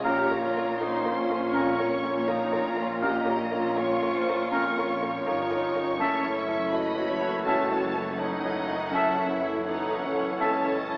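Rubato phrasing in 4/4 lets this cinematic passage, cut from a longer piece, breathe freely, moving from Bbm to Gbm7 in a moving, uplifting mood. A close, expressive chamber violin section carries the melody with vibrato, while a distant studio violin section, an airy concert flute, a mellow cor anglais and a close-miked clarinet in the background add second lines. A bright, brilliant grand piano, intimate and polished with audible action noise and long sustain, anchors the accompaniment beside a lush, focused viola section, and a mellow, roomy French horn section holds sustained chords from 0.1 seconds. Underneath, an intense cello section and a smooth, even double bass section supply the bass. The whole sits in a wet stone room reverb and is filtered through an AM radio sound.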